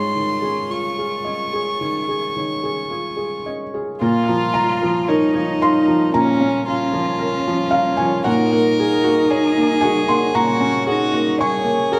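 A felt-muted upright piano, soft and intimate with audible action noise, opens this fragile, longing neoclassical excerpt in Bb minor at a rubato 54-58 BPM alongside a rich, floating sul tasto violin melody, a dark cello second line with vibrato played close, and bright, ringing harp arpeggios in the background, the quartet playing live in a wet stone room as the harmony moves from Dbadd9/Ab to Bbm at 4.0 seconds and to Gbadd9/Bb at 8.2 seconds.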